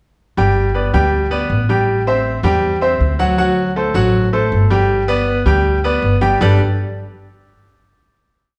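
Set in a lush, reverberant large studio heard from further back in the room, this short, sunny and danceable salsa piece in G major at 159 BPM features an up-front, brilliant grand piano playing a montuno in octaves over a woody, thumpy pizzicato upright bass whose tumbao anticipates the chords, the vamp cycling through Gadd9, Am7, D7 and G before settling on a final Gadd9 at 6.4 seconds.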